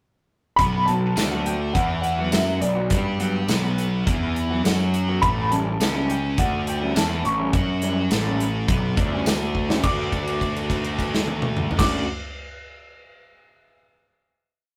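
Indie rock with a wistful, jangly feel, this rough rehearsal-room piece sets a dark, woody upright piano's motif-based melody over a growly fuzz electric bass driving eighth notes that double the scooped high-gain guitar's distorted octave riff, while an electric guitar through a small old amp adds short syncopated chords in the background and an up-front big rock drum kit plays a 60s soul groove with bright cymbals and tambourine, until a drum fill at 9.5 seconds gives way to a final D chord and held note from 9.8 seconds.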